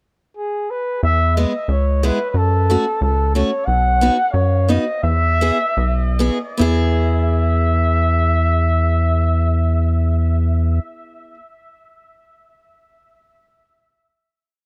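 Set in a dry, echo-heavy mix, this short, bouncy and jolly alpine dance-band piece in E major and 2/4 moves between 69 and 92 BPM, slowing from 3.7 to 6.6 seconds before settling onto a final chord. A mellow flugelhorn with vibrato and dub echo enters at 0.4 seconds with a classical-style, motif-based melody in period phrases. A rubbery, nasal square-wave bass sits up front with root-and-fifth notes on the main beats, and a bright picked acoustic archtop guitar adds off-beat triad chords through E, F#m and B.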